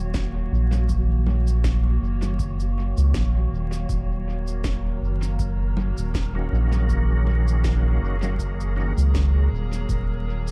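A slow, lightly swung groove in 4/4 anchors this meditative, spacious ambient dub fragment, cut from a longer piece and resting on a single minor seventh chord. An electronic kick, deep and tape-warm, sits in the background as if re-recorded in a large room, while a woody electronic snare, shaker and congas are thrown into dub echo. Up front, a round analog bass holds the low end with a dark, saturated weight, beneath a warbling, nostalgic pad of detuned sustained chords coloured by chorus, phaser and reverb. An airy, breathy noise texture drifts behind like wind, and at 6.4 seconds a bright, reedy tonewheel organ cuts in with stabs through a slow rotary speaker and echo, stopping at 8.9 seconds. The echo-heavy mix carries a digital ambience and a bed of vinyl crackle.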